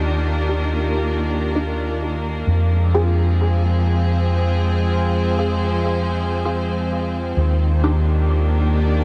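Ambient music, deep and meditative, moving at 98 BPM in a straight 4/4 in F dorian with a slightly low tuning, this short passage is cut from a longer piece. A clear chamber string section holds sustained, biting chords up front while a round, punchy fingered electric bass with tube saturation anchors the low end, and a glassy sine texture of drifting overtones floats in the background through chorus and its own reverb. A muted, detuned dub chord stab with a filter sweep and phaser sits very quiet from 0.5 to 8.0 seconds over the Ebmaj7 and Fm harmony, all placed in a dreamy mix soaked in a huge 7.2-second reverb.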